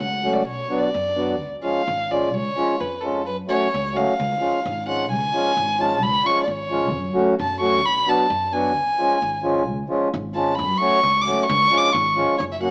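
A stone-walled room lends a damp, echoing ambience to this live, small-speaker recording of a Balkan wedding band, cut from a longer piece in a bittersweet, virtuosic mood at 131 BPM in a swung 2/4 and C# phrygian dominant, with the tempo speeding up throughout. An up-front, dark violin carries the melody as a solo from the start, its sul tasto bowing airy and intimate with light vibrato and a soft attack, while a reedy, round accordion enters at 0.2 seconds with mellow accompaniment. Beneath them, a woody pizzicato upright bass on steel strings anchors the cycling Bm, C# and F#m harmony.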